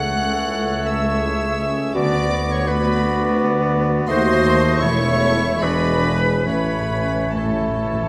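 A chamber violin section carries the lyrical melody high above the orchestra, bowed sul tasto with light vibrato and a soft, intimate attack, in this slow, rubato romantic movement in 3/4 at roughly 68-87 BPM in A major, cut from a longer piece. Beneath it, a second violin section, a distant, silvery flute with vibrato and a crisp attack, a vintage-toned oboe and a clear clarinet in the background weave supporting lines, while a present bassoon and a very quiet, smooth viola section fill the accompaniment. A thumb-plucked concert harp adds ringing arpeggios. The bass rests on a dark, woody cello section, a pure, floating double bass section and a roomy tuba. A tight, smooth-topped French horn section holds very quiet sustained chords from 1.9 s, and close timpani struck with medium mallets enter at 6.5 s for a soft fill as the harmony passes through a diminished chord and E9 before settling on A. 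The whole orchestra sits in a lush scoring-stage reverb that lends the mood a warm, glowing intimacy.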